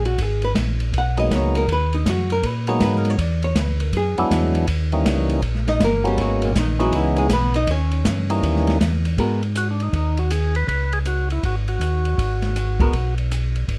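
Swinging in 4/4, this bluesy, soulful soul jazz organ trio fragment opens with a compressed, clean hollow-body archtop guitar soloing through the first 9.2 seconds, while a mellow, round tonewheel organ holds the bass through a slow rotary speaker, a percussive tonewheel organ with key click and second-harmonic percussion carries the melody from 1.2 seconds, and an acoustic jazz kit with boomy kick and dark cymbals keeps time in a small room with light reverb.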